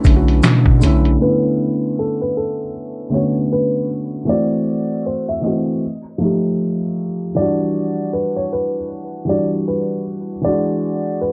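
A felt-muted upright piano sits up front, its soft, intimate accompaniment carrying audible action noise through this melancholic, nostalgic lo-fi hip hop excerpt, cut from a longer piece. Above it, a dark upright piano plays a woody, vintage-toned melody through tape echo, both pianos running the full 11.3 seconds under a low-pass filter. For the opening moment only, a muffled, compressed sampler-style drum kit with a thumpy kick, handclaps, hi-hat and snare joins a round, deep dub sub bass and a close, dry tube shaker tucked in the background, the drums and bass falling away at 1.2 seconds. From there the pianos carry on alone under a filter sweep that lasts to the end, moving through jazzy extended chords from Bm11 toward Em9 and E9. The production is dark and warm, bathed in a wet studio reverb with the high end rolled off.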